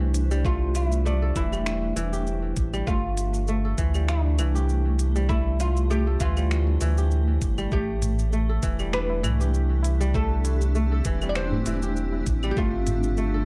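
Organic downtempo in A minor at 99 BPM with a gently swung 16th feel, this mystical, dark-toned clip pairs a woody, plectrum-plucked oud melody and crisp, fingerpicked kora arpeggios, both carrying delay, over a blurred, granular cloud pad with sidechain pumping, a deep, round sub bass up front, a gritty, thumpy electronic kick and a kit of claves, finger snaps, smooth hi-hat and shaker in small-room ambience, with a high-tuned, ringing tabla joining in the background at 7.9 seconds as the harmony moves between Am7 and G7sus4.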